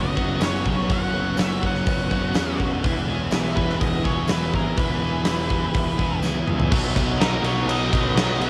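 This short excerpt of wistful, blissful shoegaze and dream pop opens on a wall of guitars: a biting overdriven guitar with analog chorus plays the main riff while a dark semi-hollow guitar, soaked in reverse reverb, riffs in the background until 6.7 seconds. Beneath them a fuzz-laden picked bass pushes from the back of the mix, and a twangy, very quiet clean guitar recorded direct picks arpeggios. Above, a dark octave-fuzz lead guitar carries the melody through distortion and analog delay, while a glassy, warbling FM pad holds ethereal chords at a very low level. A huge arena drum kit arrives at 0.2 seconds, up front with a pumping room sound, bright cymbals and a punchy kick, joined by a jingly tambourine in the background, and a drum fill leads into a new section at 6.7 seconds. The harmony moves from F#sus4 to E and settles on Bmaj7, and the whole piece carries the lightly reverberant character of a home cassette recording.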